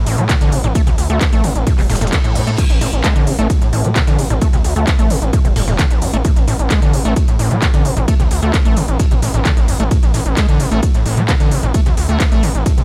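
A gritty, distorted sawtooth synth bass with sidechain pumping opens this intense, hypnotic stretch of driving peak-time techno at 131 BPM in A harmonic minor. It is joined almost at once by a squelchy, filter-swept acid bass riff trailing dub echo, an overdriven techno kit of crash, handclaps, smooth hats and ride in a small room, and a hushed, dusty sampler-style kit of hi-hat, shaker and snare. A heavy, tape-warm kick lands up front moments later, and a faint reverse cymbal arrives at 2.0 seconds, all set in a digital ambience.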